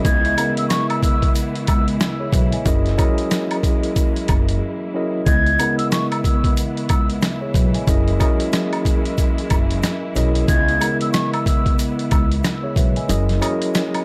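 Tough and dark, this boom-bap hip-hop excerpt swings a pitched-down, gritty sampler kit with a thumpy kick over woody pizzicato upright bass, a clean tine electric piano through cassette tape, lush bowed symphonic strings, and a pure, crisp-attacked concert flute melody with analog delay, while a background tube shaker and woodblock add texture, with a brief break at 4.6 seconds and the kick dropping out at 13.1 seconds.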